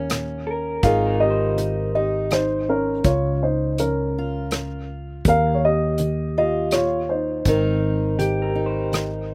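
A gently swaying 3/4 pulse at 82 BPM carries this heartfelt, intimate acoustic folk-pop ballad in Ab major, a short passage cut from a longer piece. An unplugged drum kit sits up front with a punchy kick, hi-hat and rim clicks played with bundle sticks. A round, dark fretless electric bass anchors the low end directly and close. The melody comes from a mellow, somewhat boxy grand piano with a slapback echo. A fingerpicked acoustic archtop guitar with audible finger squeak fills in the accompaniment, also touched by slapback echo. A slightly broken-up, lo-fi electric guitar with tremolo adds compressed arpeggios from 0.5 to 2.2 seconds and again from 8.2 seconds, over a progression moving from Eb7 through Abadd9, Db and Ebadd9 back to Abadd9, all captured outdoors with little reverb.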